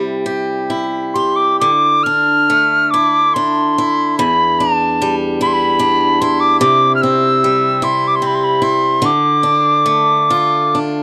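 Rubato 6/8 drifts at roughly 44-50 BPM in dotted quarters, giving this Celtic slow air in D dorian, tuned to A4 = 442 Hz, a mournful, longing sway. A bright, boxy acoustic guitar opens at 0.0 s, picked in a swing style as accompaniment and moving through C, Dmadd9, Em7, C and finally Dm. At 1.1 s a reedy wooden whistle enters with the melody, set louder than the guitar and carried high in its register with a crisp chiff on each attack and vibrato. The whistle's tone is pure and woody, and both instruments sit up front in a dry, close 1970s-style studio sound with light reverb and a faint mains hum underneath. This short excerpt, cut from a longer piece, stays within a single section and lasts 11.0 seconds.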